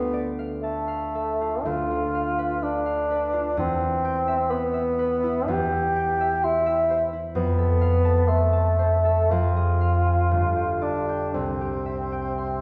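In a rubato 4/4 pulse of 57-66 BPM, this serene, tender romantic duo in C major has a mellow bassoon singing the melody with light vibrato. A ringing, fingerpicked concert harp accompanies it across a broad span, moving through a darkening F minor chord before settling on C. The pair plays in a recital hall, whose roomy reverb lends the short passage a soft, distant glow.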